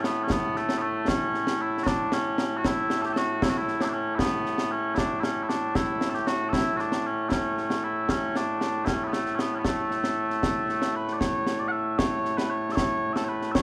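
Proud and ceremonial, this short cut from a longer piece of Scottish traditional pipe music moves in 6/8 with a straight feel. Mellow small bagpipes carry the melody from start to finish, their sweet, continuous tone sitting up front as a solo voice across a span from low A2 up to F#5. Concert snare drum and concert bass drum play throughout beside the pipes, acoustic and close, with bright cymbals and a small-room character. The whole performance is heard in a church or concert hall, wrapped in a wet recital-hall reverb that lingers for about 1.8 seconds. After the opening strain, a new section begins at 11.2 seconds and carries through to the cut at 13.6 seconds.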